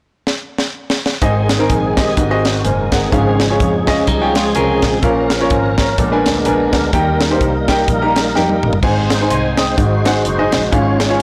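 The recording is blown-out and overdriven, soaked in a moderate echo-chamber reverb that gives this short cut from a longer uptempo gospel piece a crowded, saturated glow. It feels soulful and hopeful, with a swung 4/4 pulse. A tight, dry funk drum kit opens at 0.3 seconds with a fill, its bright cymbals, high-tuned snare and tight kick sitting up front, and it adds another fill just before the final stretch. At 1.2 seconds the band arrives: an intimate, boxy grand piano with audible action noise plays accompaniment close to the ear, while a full, lightly overdriven tonewheel organ holds sustained chords through chorus vibrato and a slow rotary speaker. Underneath, a single bowed double bass gives an expressive bass line with vibrato, portamento and a soft attack. A clean, picked and compressed electric guitar slips in briefly at 4.1 seconds as a second line, over changes that move from Ab through Db/Ab, Bbm and Bb7b9 to Eb before returning home to Ab and Ab7.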